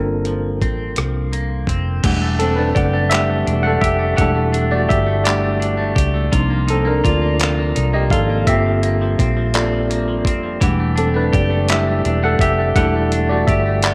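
Lightly reverberant, this sultry, yearning slow six-eight R&B passage in E minor at 56 BPM features an up-front, worn, slightly out-of-tune tine electric piano, lightly overdriven through its built-in speakers, soloing over Gm11, Em11 and Cm11 chords, while a dark, round, foam-muted fingered bass sits up front, a dusty soul sampler-style drum kit with a gritty, thumpy kick, handclaps, rim clicks, hi-hat and crash enters at 0.2 seconds, and a bright, twangy, picked clean electric guitar adds a second line bathed in lush chorus.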